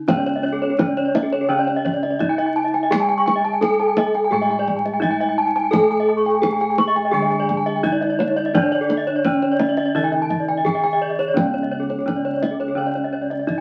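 Brilliant and shimmering, this Balinese gamelan excerpt moves at a steady 85 BPM in a straight 4/4, built on a C# pelog scale and cut from a longer piece. Up front, a bronze metallophone struck with a horn mallet carries the melody, its paired tuning producing shimmering beats in a boxy small-room sound. Beneath it, a second metallophone played with a wooden mallet supplies ringing accompaniment in a lower register, while bossed gongs hold the bass with a round, beating tone set back in the background. Two more bright metallophones, also horn-struck with paired tuning, spin arpeggios high above, one of them close-miked, dry and full. A deep kendang, close and dry, plays percussion from the opening moments to the end at 13.6 seconds, all heard through the crackle of a very old 78 rpm record in a moderate studio ambience.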